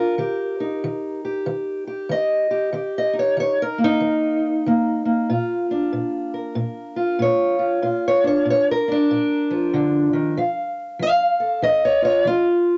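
A cassette-made home recording with a moderate booth ambience and a muffled top end opens on a soulful, laid-back blues in Bb major at 94 BPM, swung in 4/4. A dark, boxy, parlour-style steel-string acoustic guitar, fingerpicked and up front, plays alone for the whole 12.8 seconds, ranging from Bb2 to F5. It moves from Eb to Bb at 5.3 seconds and on to F at 10.4 seconds before the cut.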